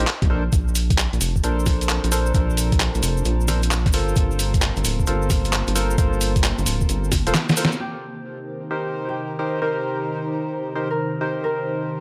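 A rubbery, dark square bass bounces up front through the opening of this soulful, swung two-step UK garage excerpt, joined by a thumpy, pitched-down electronic kick, a gritty, tape-warm sampler kit of handclaps, filtered hi-hat and snare, a grainy cabasa in the background, hollow organ stabs with 12-bit grit and tape echo, and an ethereal chorused pad pumping under Bbmaj9 and Gm11 chords, until a drum fill at 7.3 seconds hands over at 7.8 seconds to a Cm7 passage where a ringing acoustic concert harp melody and a soft, breathy pad float on with the stabs through 12.0 seconds.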